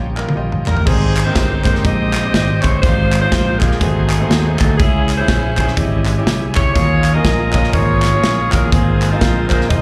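Hopeful and reverent, this excerpt of uptempo gospel swings at 122 BPM in Ab major, opening with a drum fill and a grand piano fill, during which an edgy, close-miked saxophone section takes the melody at 0.7 s with light vibrato and plate reverb. Underneath, the clear, intimate piano (its action noise audible, with plate reverb and slapback echo) comps alongside a very quiet tonewheel organ holding sustained chords with key click and a slow rotary speaker, while a punchy fingered electric bass and an up-front, polished drum kit drive the groove. Hollow group handclaps sit in the background, and the whole performance comes across as a live gig heard through the venue's PA, with club reverb, over rich chords such as Abmaj7, Ab7b9 and Eb9sus4.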